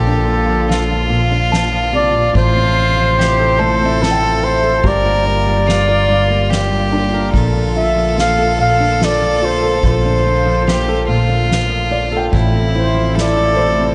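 A mellow flugelhorn carries the melody with vibrato and a distant, roomy jazz-style tone from the opening moment of this heartfelt, intimate acoustic folk-pop ballad fragment in 3/4, joined at once by a bright, airy-bowed solo violin on a second line, a fingerpicked steel-string acoustic guitar with finger squeak, dark sul tasto chamber strings holding sustained chords in the background, soft arpeggios from a felt-muted upright piano with audible action noise, and a direct fingered electric bass, while a very quiet soft-mallet drum kit with boomy kick, fat snare and ride cymbal plays from 0.7 s to 13.4 s, the ensemble sitting in a moderate concert-hall reverb over chords moving from Bbmaj7 through Fmaj7/A and Gm7.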